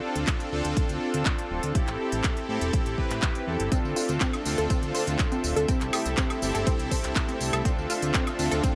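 Progressive house with a bittersweet, driving mood, cut from a longer piece, built on a punchy, up-front electronic kick, crisp house hats with handclaps, tambourine and woodblock, and a fat, saturated analog bass that pumps under the sidechain. A soft, up-front supersaw plays stabs through cassette-tape colour and dub echo across chords moving from Dm7 to Am7, C6 and back. At 3.7 s a detuned unison pluck enters with echoing arpeggios, together with a dark chamber string section holding sul tasto chords in the background, all in a dry, close-sounding mix.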